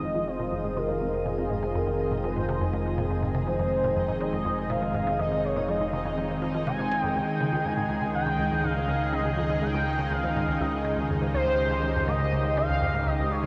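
From the first moment, a smooth, warbling portamento lead with vibrato sings up front over a lush, airy unison pad, while a squelchy, ring-modulated blip pluck riffs in the background, a fat analog bass sustains beneath, and a bubbling stepped-filter texture drifts quietly behind, all steeped in a huge shimmering reverb in this expansive, hypnotic piece of sequencer-driven space music that moves from Fm7 to Dbsus2 at 7.2 seconds.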